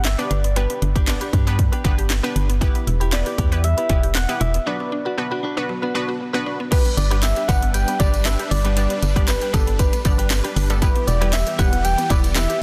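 A straight 4/4 house beat at 117 BPM drives this summery, euphoric dance-pop clip in G major, its punchy kick, cracking snare, handclaps, hi-hats and crash up front beside a hollow, dark, organ-like FM bass that pumps with the sidechain. A round, gentle keys-like lead carries the melody with chorus, vibrato and dub echo over a lush, detuned unison pluck, while a twangy clean guitar riff and a woody mallet-like pluck with phaser sit in the background. After a break from 4.7 to 6.7 seconds, huge supersaw chords and a jingly tambourine join for the second section, all within a dense, heavily limited digital ambience.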